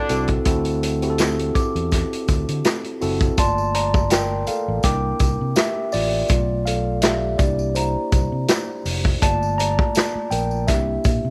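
A mellow, clean tine electric piano sits up front in this silky, smooth stretch of lush 1970s-style soul at 82 BPM in G dorian, with gently swung 16ths, opening on D7 and taking a solo from 3.4 s over Gm9, C9 and G9/B. A round, dark fingered electric bass and an acoustic vintage drum kit with a punchy kick and rolled-off top hold the groove, while a jingly tambourine lingers in the background. A bell-like, delicate celesta rings softly behind them from 1.5 to 9.1 s, all framed by light studio reverb in this short cut from a longer piece.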